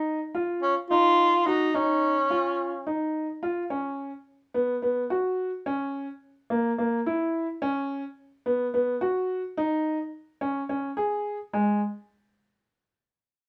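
Tense and driving, this progressive instrumental passage, cut from a longer piece, moves in a straight 7/8 at 215 BPM counted in eighths. A warm, open baby grand piano sits up front with long sustain, carrying arpeggios from the start until 11.8 seconds through a C#add9, Bsus2, A#dim, Bsus2 and C#sus2 progression. A mellow tenor saxophone plays a brief classical-style solo melody with vibrato between 0.6 and 2.9 seconds, set in a wet small-room reverb.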